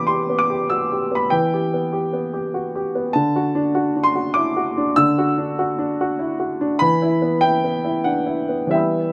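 A woody upright piano carries this short passage alone, sitting up front with a close, intimate presence. The style is neoclassical minimalist piano in E minor, with a wistful, melancholic mood. The pulse is a gentle 98 BPM in 3/4, though the playing breathes with a rubato feel that keeps the time loose and expressive. The harmony moves from E minor to Dadd9 at 3.1 seconds and settles back on E minor at 6.8 seconds, spanning a register from D3 up to E6. Captured outdoors, the sound is dry, with little reverb and an absence of room character, which leaves the piano's warm tone plain and immediate. At 9.1 seconds, this brief cut from a longer piece ends.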